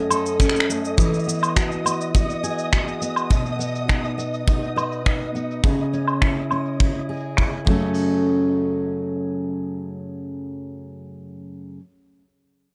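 Intimate and wistful, this folktronica piece, cut from a longer work, moves in a straight 4/4 over a chord path of F#m, Eadd9, B and C#m before returning to F#m. A fingerpicked steel-string acoustic guitar carries arpeggios from low F#2 up to B4, its full-bodied dreadnought tone sitting up front and trailed by tape echo, and it is the only part still sounding after about 8.0 seconds, ringing on alone until 11.8 seconds. Alongside it, a flickering, grainy texture holds a sustained D#5, its detuned, granular tone swelling in slowly and fading with a long release inside its own reverb. An organic electronic drum kit of cabasa, crash cymbal, finger snaps and woodblock sounds overdriven and low-pass filtered, re-recorded in a large room and placed up front, joined at 0.4 seconds by a punchy acoustic kick drum with the bright ring of a stone room. Light reverb surrounds the whole mix.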